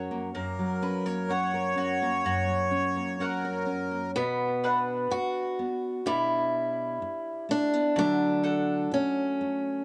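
A picked acoustic archtop guitar with fresh strings carries the melody from 4.2 seconds, sitting up front in this intimate, reflective acoustic folk piece for a small band, cut from a longer work. A full-bodied nylon-string guitar fingerpicks a deep classical accompaniment and a round, mellow mandolin plays double-string arpeggios throughout, while a reedy accordion with slow beating adds a second line until 4.1 seconds, just before the archtop enters. Every part carries a slapback echo, and the dry outdoor sound with little reverb keeps the straight 4/4 feel close and unadorned.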